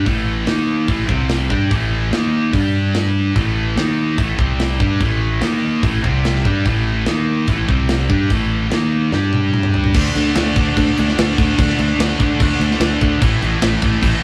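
A rough rehearsal-room recording with a short, moderate small-room reverb captures this anthemic, swaggering hard rock excerpt at 146 BPM in straight 4/4, where three distorted guitars play a riff built on A5, D#5, C5 and G5 power chords. A bright, scooped high-gain guitar plays alongside a double-tracked heavy high-gain guitar and a sludgy, overdriven one sitting in the background, over an up-front, growly, punchy fingered bass and a tight metal drum kit with bright cymbals and a medium-tuned snare. A drum fill at 9.1 seconds leads into a new section at 10.0 seconds that holds on D5 before returning to A5.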